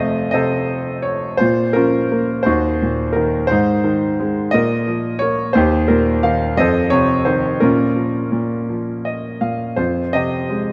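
A moderate plate reverb sets a clear concert grand piano in the room, its deep bass and smooth, vintage tone marked by short sustain. This melancholic, dark classical solo piano fragment, cut from a longer piece, unfolds in 6/8 with uneven beats and free rubato, the harmony moving through Bb minor to an F7 before returning home. A brief piano fill arrives at 8.7 s, and the passage comes to rest on F minor at 9.8 s.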